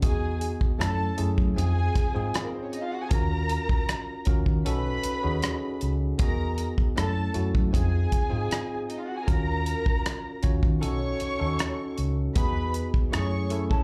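Lush 1970s-style soul with a silky, cinematic mood, this short excerpt rides a dry, damped drum kit of tight kick, hi-hat and rim click under a round, foam-muted fingered electric bass sitting up front. A bell-like tine electric piano plays accompaniment while a dark, bowed violin section carries a second line with expressive vibrato, both touched by plate reverb and slapback echo. At 13.7 seconds a twangy, slightly broken-up electric guitar through a small old amp slips in with a brief riff, all heard as a live club gig through the venue's PA.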